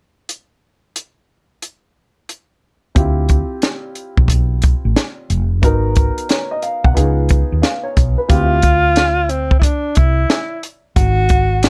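Mellow and nocturnal, this jazz-hop excerpt at 90 BPM swings on a dry, compact cocktail drum kit with a punchy kick and high-tuned snare, joined near 3 seconds by a growly, round fretless electric bass and a dark, vintage upright piano that falls away at 8.6 seconds, as a smooth alto saxophone with vibrato and scooped notes takes a jazz solo from 8.3 seconds in an intimate sound with little reverb.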